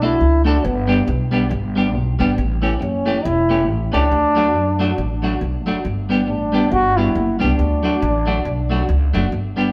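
A solo trombone carries the melody in a pop style, its warm tone marked by vibrato and an analog delay, sitting up front yet distant and roomy before it drops out at 9.1 s. This bouncy, upbeat ska excerpt moves at 138 BPM in 4/4 with a swung eighth-note feel in D major. Beneath it, a clean electric guitar plays picked accompaniment with a bright, twangy edge and a tremolo effect, while a pizzicato upright bass on gut strings gives a woody, thumpy, dark low end. Both play through to 9.7 s over a simple progression of D, G and A7. The band plays live together in one room, and a wet stone-room reverb lends the whole take an open, echoing space.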